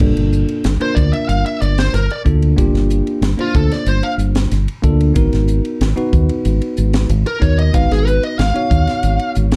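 Electric jazz fusion at 93 BPM in a straight 4/4, nocturnal and intense, cut from a longer piece: a smooth, overdriven lead guitar with slapback echo carries the melody from 0.8 seconds, sitting up front in a solo that spans F4 to F5. Beneath it, a bell-like tine electric piano supplies clean, bright accompaniment over Gm9 moving to Abm9 at 5.2 seconds, while a round, punchy fingered bass anchors the low end. A crisp, polished drum kit with dark cymbals, a high-tuned snare and a tight kick completes the dark, lightly reverberant mix.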